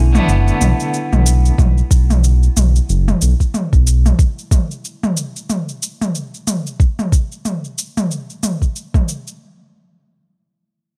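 This meditative, earthy organic downtempo excerpt opens on a twangy, slightly broken-up electric guitar picking a Bm7 through tremolo, sidechain pumping and tape echo, over a smooth, mellow synth bass with vibrato and a ring-modulated edge, as up-front electronic toms and shaker with a tape-warm, small-room character join almost at once. The guitar stops at 1.6 seconds just as a soft electronic kick drum enters up front, and the bass drops out at 4.1 seconds. Kick, toms and shaker then carry the lightly swung sixteenth-note groove in a dry, close mix.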